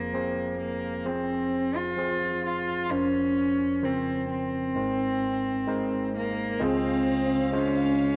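A bowed solo cello with a reedy, gut-string tone and light vibrato carries the melody up front over a barky, lightly overdriven tine electric piano throughout this tender, hopeful acoustic folk-pop ballad excerpt at 65 BPM in Db major; at 6.6 s a sul tasto chamber string section adds sustained chords and a very quiet felt-muted upright piano, its action noise audible, joins with soft arpeggios, the mix sitting in moderate spring reverb on a home cassette recording.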